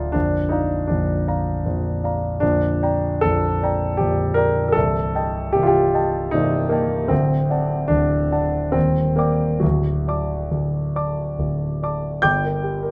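In a three-beat metre played with free, elastic rubato, this brief romantic character piece for solo piano feels both bittersweet and stormy. A concert grand carries the music alone from 0.0 to 12.9 seconds, ranging from the deep bass of its lowest register up to high, clear treble notes. The instrument has a warm tone with a deep, weighty bottom end and short sustain, so each chord speaks and then fades quickly. The harmony moves from Bb through Gm/Bb and Am7b5/C to a tense D chord, briefly brightens on Ebmaj7, and returns to D before settling on Gm at 12.3 seconds. Close, detailed microphones place the piano up front, with light reverb adding a touch of space to this fragment of a longer work.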